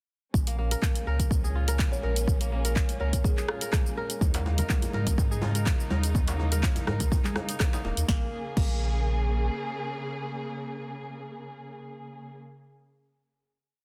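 At 0.3 s a hypnotic, spiritual afro house piece in Bb minor starts at full force, with an overdriven electronic kick pounding four-on-the-floor up front, a programmed afro-pop kit of sharp snare, claps, rim clicks, shaker, closed hats and crash, a round sine sub bass with tube saturation and long gliding notes, and a dark, lush symphonic string section holding bowed chords roughened by vintage 12-bit sampler grit. At 124 BPM with a light swing on the 16ths, the strings, bass and a mellow, crisp fingerpicked kora all pump against the kick, while the kora repeats a ringing 16-step arpeggio through digital delay. A woody, hollow-sounding kalimba drifts briefly in the background, its plucked phrases also echoing through delay. At 4.2 s the harmony moves from Bbm7 to Eb7sus4 and acoustic hand drums join: bright, thin-skinned congas interlocking in the background and a band-limited djembe with metal rattles playing a hard-handed cross rhythm. 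At 8.1 s the dense, heavily limited, dry mix settles on a closing Bbm7, the drums fall away shortly after, and the vibrato-rich strings linger until the end.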